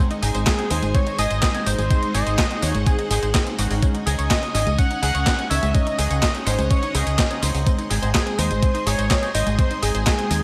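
This is a danceable, bittersweet italo disco excerpt in a straight 4/4, built on a single G# chord throughout. A lush, full-bodied string machine holds sustained chords in the background with slow-attack swells of ensemble chorus, while a round analog pluck spins short-decay arpeggios alongside it, roughened by vintage 12-bit sampler grit and carried on a delay. A clean, twangy electric guitar through an envelope filter adds picked stabs, colored by analog chorus and delay. A clean 12-bit digital drum machine with congas, handclaps, hi-hat, tambourine and a medium-tuned snare is overdriven and splashed with gated reverb, and an up-front fingered electric bass, envelope-filtered and tube-saturated, joins at 0.2 seconds. At 0.5 seconds a thumpy, overdriven electronic kick arrives alongside a thick, bold unison lead whose detuned, wave-folded, ring-modulated tone carries the melody with vibrato and delay, all set in a bright 1980s-style digital production with light digital ambience.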